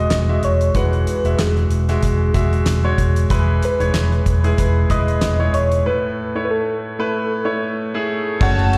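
A lightly swung 94 BPM groove in 4/4 carries this hopeful, anthemic piano-driven pop fragment in E major, where a clear, open baby grand with long sustain and a round, dark, foam-muted electric bass sit up front beside a dry 70s drum kit with fat snare, tight kick, hi-hat, ride, crash and handclaps, while a gentle FM synth lead sings the melody through chorus, phaser, slapback echo and delay over Eadd9, E and Asus2, a break arrives at 5.9 seconds, and a smooth, distant violin section slips in at 8.4 seconds, all heard like a live gig through a venue's PA in a small room with recital hall reverb.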